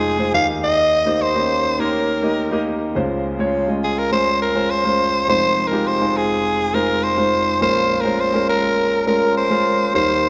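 Romantic and uplifting, this short pop cut from a longer piece moves at a straight 103 BPM in 4/4, with a growling, breathy, raspy soprano saxophone carrying the melody up front with vibrato, close-miked and touched by tape echo, over a polished, warm grand piano accompaniment that spans from deep bass to the upper middle, as chords shift from Eb to Dbmaj7 and then Fm7 to Bbm7 in a second section from 5.3 seconds, all set in a wet recital hall reverb.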